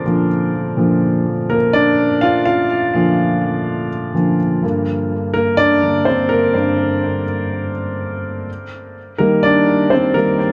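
Dramatic and earnest, this short pop excerpt is carried entirely by a solo concert grand piano in a straight 4/4 feel. The piano sounds intimate and up front, with deep bass, a smooth, vintage tone, long sustain and audible action noise that brings the listener close to the instrument. Tape echo trails its notes, and a moderate spring reverb gives the echo-heavy mix a lingering space. The harmony moves from Bb to Gm at 4.6 seconds and settles on Eb at 8.5 seconds, while the piano spans from G2 up to F5 across the 10.5-second passage.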